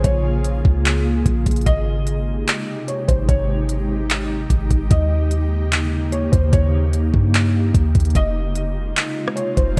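Spacious and ethereal, this atmospheric cloud-rap cut moves at 148 BPM in 4/4 with a half-time feel, set in F minor and lifted from a longer piece. A felt-muted upright piano carries the melody in a soft, intimate register between C5 and Eb5, its thick-felt tone colored by analog chorus and delay. Beneath it, an airy pad of detuned sawtooth and triangle voices holds sustained chords with a slow attack and long release, bathed in ensemble chorus and its own reverb while sidechain pumping makes it breathe. A clean, sine-like 808-style bass sits up front, deep and boomy with a fast attack and dark decay, alongside a trap kit of knocking kick, crisp hi-hats, handclaps and rim clicks roughened by vintage 12-bit sampler grit. The harmony drifts from Bbm7 through Abmaj7 and Eb7 before settling on Fm7 at 8.2 seconds, all within a bright, 1980s-style digital production with light reverb.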